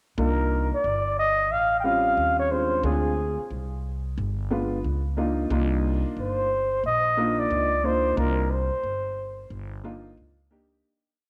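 At 0.2 s, a breathy flugelhorn, a dark grand piano and an upright bass enter together in this short, mellow and cool hip hop piece at 90 BPM in 4/4, with a 62% swing on the sixteenths in C minor. The pizzicato bass sits up front with a woody, thumpy gut-string tone, walking through the changes with muted ghost notes, slides and chromatic approach notes. The piano comps freely in rootless voicings, its boxy, shadowy sound carrying long sustain over a jazz progression that moves from Cm11 through A7alt, Dm7b5 and G7b9 before returning to Cm11. Above them, the flugelhorn plays a jazz-style solo built from short call-phrase motifs, with light vibrato, scooped notes and a vintage, airy character, and it drops out at 9.5 s. A generous echo chamber reverb with a long tail surrounds the playing, and the piece fades out from 8.2 s to its close at 10.8 s.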